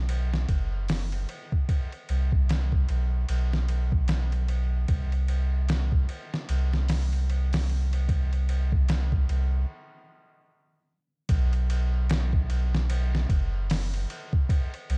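A lazy 4/4 groove with a swung sixteenth-note feel sets the pace for this smoky, brooding trip hop fragment, cut from a longer piece. A soft dub sub bass opens at the very start, deep, round and sustained, with a triangle and square wave tone and a quick attack, sitting up front and low in the register. A sampler-style drum kit joins almost immediately, pitched down, compressed and muffled, with a thumpy kick, a medium-tuned snare, hi-hat and ride cymbal, all carrying a tape-like warmth. The music breaks off in a stop from 9.7 to 11.3 seconds, after which a new section carries it to the end. The production is dark, warm and dry, keeping both parts close and up front.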